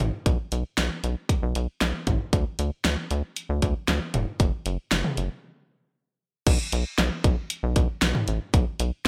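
Bright 1980s-style digital production with light reverb frames this melancholic, cool synth-pop excerpt in B minor at 116 BPM, tuned to A4 = 435 Hz, where a rubbery, nasal square-wave bass with a filter pluck and fast attack sits up front beside a layered electronic pop kit of punchy kick, fat snare, hi-hat, toms and crash cymbal, both playing throughout, with a break from 5.4 to 6.5 seconds before a new section begins.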